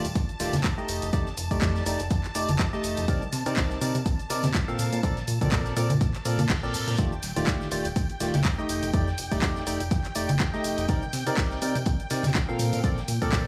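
Soulful and bittersweet, this short cut from a longer piano house track moves with a gently swung groove in 4/4. A hollow, percussive organ stab carries the riff up front, its chorus and vintage 12-bit sampler grit giving it a lo-fi edge, with analog delay trailing behind and sidechain pumping making it breathe against the beat. Beneath it, a plucky analog bass with a funky, dark filter pluck and a moving notch pumps along, while a shimmering string machine holds high, sustained violin chords with an ensemble chorus. The punchy, overdriven electronic kick sits up front from 0.2 seconds, layered with a house kit of handclaps, bright hats and shaker, while tambourine and hard-hand congas ring in the background and a very quiet natural kit adds hi-hat and snare. A reverse cymbal sweeps in from 6.2 to 7.0 seconds as the lush jazzy changes, from Ebmaj9#11 through F13 and Cm9 to Bbmaj9, come back around, all captured with a dry, gritty hardware sound and transformer saturation.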